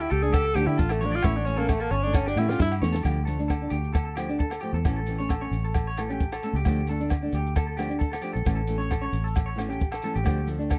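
A clear, up-front tenor saxophone solo opens this danceable, bittersweet highlife guitar band excerpt over bright, twangy electric guitar arpeggios with lush chorus and tape echo, a round, dark fingered bass, fingerpicked nylon-string guitar, grainy maracas, ringing agogo bells in the background and a compact cocktail kit with a punchy kick and high-tuned snare, whose fill from 2.1 seconds carries the band past the saxophone's exit at 2.7 seconds into a Dm-to-A groove, in a dry, close 1970s-style studio sound.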